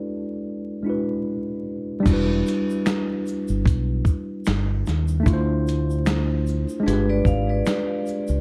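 Lo-fi hip hop in E minor at 75 BPM with a lazy 16th-note swing, hazy and reflective, this excerpt opens on a worn, slightly out-of-tune tine electric piano alone before a deep, round fingered electric bass, a gritty sampler-style drum kit with a thumpy kick, snare, hi-hat, finger snaps, shaker and crash, and a grainy tube shaker in the background all arrive at 2.1 seconds. At 6.9 seconds a metallic, ringing vibraphone struck with hard mallets enters on a second line through tape echo, over chords moving from Em7 through Dm9 to G7b9. The production is dark, with vinyl crackle and digital ambience, and the drums sound compressed and re-recorded in a large room.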